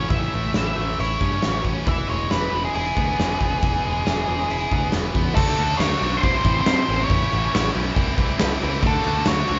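Classic rock with a confident, driving feel, this excerpt from a longer piece moves in a straight four-four. An octave-fuzz lead guitar carries the melody with a dark, distorted, picked tone, sitting just above a tight, double-tracked rhythm guitar whose bright, crunchy riff runs underneath. A picked electric bass, warm, direct and punchy, anchors the low end. The big rock drum kit comes in at 0.1 s, sitting up front with an acoustic, big-room sound, a fat snare, a punchy kick, and smooth crash and hi-hat. The harmony moves from A to E, then shifts at 5.4 s into a passage cycling through D, C and A. The band sounds like it's playing live together in one room with light reverb, and the top end stays rounded and dusky.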